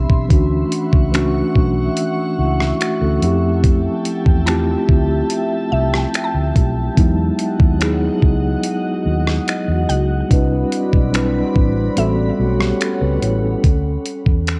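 Lo-fi cassette-tape warmth wraps this tender, romantic contemporary R&B excerpt in D major at 72 BPM, where a mellow tine electric piano sits up front over a glassy, ethereal FM pad with ensemble chorus and sidechain pumping, a dark, foam-muted fingered electric bass, a woody mallet-like synth pluck with analog delay in the background, and a gritty, compressed sampler-style kit of finger snaps, hi-hat, rim click and thumpy kick that drops the kick from 12.0 to 13.6 seconds as lush major-ninth chords move from Dmaj9 through Fmaj9, Emaj9 and Cmaj9 to an A13 before resolving on Dsus2.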